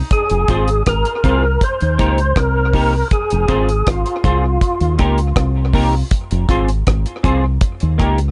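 This short, hypnotic and laid-back roots reggae excerpt opens at 0.1 seconds with a percussive tonewheel organ and a deep reggae drum kit, in straight 4/4 at 80 BPM in F minor. The organ carries the melody with a fat, lightly overdriven tone, third harmonic percussion, key click, chorus vibrato and a slow rotary speaker, all touched by tape echo, before it stops at 5.0 seconds. The drums are dry and smooth, with a tight kick, hi-hat and rim click, a rolled-off top and tape echo of their own. A fingered electric bass sits up front, round and punchy with a direct, amped sound, while a clean semi-hollow guitar adds dark, hollow-body accompaniment through analog chorus and tape echo. The harmony sways between Fm and Eb, and the close mix carries little reverb and a muted top end.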